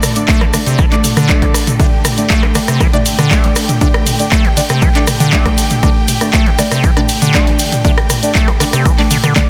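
A dense, heavily limited modern master with light digital ambience frames this gritty, raw acid house cut, running at 119 BPM in a straight 4/4 from a longer piece. A punchy, tape-warm kick sits up front beside an analog drum machine of handclaps, hi-hat, ride, rim click, snare and toms, with a grainy tube shaker in the background, while a squelchy, hollow square-wave acid bass riff with a resonant filter sweep pumps with sidechain compression through digital delay from 0.3 s. Above it, a deep, dark chord stab with chorus, phaser and delay enters at 0.2 s, and a clear, lush bowed string section holds sustained chords with vibrato and its own sidechain pumping throughout the 9.5 seconds.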